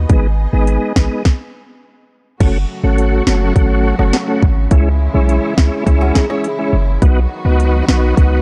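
Sultry and bouncy, this dancehall passage cut from a longer piece moves at 104 BPM in straight 4/4, set in F# dorian with a dark, warm production and digital ambience. An up-front island pop drum kit drives it with a tight kick, sharp snare, rim click, metallic hats and crash cymbal, all roughened by vintage 12-bit sampler grit, while a deep, boomy 808-style bass with a sine body and noise layer anchors the low end. A smooth, clean tonewheel organ sits close in the mix, colored by chorus vibrato and a fast rotary speaker, as a lush bowed string section holds sustained chords in the background with sidechain pumping. The band drops into a stop between 1.2 and 2.4 seconds before the second section opens on F#m, moving on through C#m to B. Briefly, from 6.0 to 7.0 seconds, a fingerpicked flamenco guitar slips in with arpeggios, finger squeak and tape echo.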